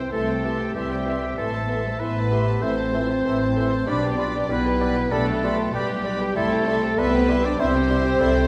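Quick, cheerful and graceful classical-period symphonic music, cut from a longer piece, where a lush violin section carries the melody high above a clear oboe, a focused second violin section, a vintage-toned clarinet and a very quiet, hollow small flute group sharing the second lines. Dark violas with portamento and a warm bassoon fill the accompaniment, distant French horns hold dark sustained chords, and close cellos join rich double basses on the bass as the harmony moves from C to Am and G/B before settling back on C at 6.4 seconds. The whole orchestra sits in a wet scoring-stage reverb, and the strings sound bowed with vibrato.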